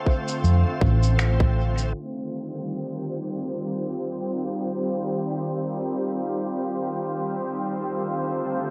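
Ambient dub at 80 BPM in C dorian, deep and spacious, where a calm, warbling organ-like pad holds sustained chords throughout while a tight, overdriven electronic kick, muffled pitched-down shaker and finger snaps with dub echo, and a round, dark hollow-body electric bass play only in the opening 1.9 seconds, after which a resonant, bubbling stepped-filter texture drifts in the background from 3.1 seconds over a long Cm stretch, all inside a moderate echo-chamber reverb.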